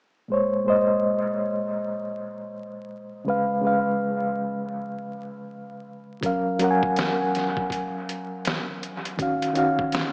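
A reedy, mellow electric piano with fast tremolo and dub echo opens this reflective, melancholic lo-fi hip hop excerpt in Bb minor at 81 BPM, moving through Bbm9 and Db7 before a muffled, compressed, pitched-down trip hop sampler-style drum kit with a thumpy kick and medium-tuned snare enters at 6.2 s on Gbmaj7, with the harmony then settling on Ebm9, all set in an echo-heavy echo chamber reverb with vinyl crackle and a small speaker sound.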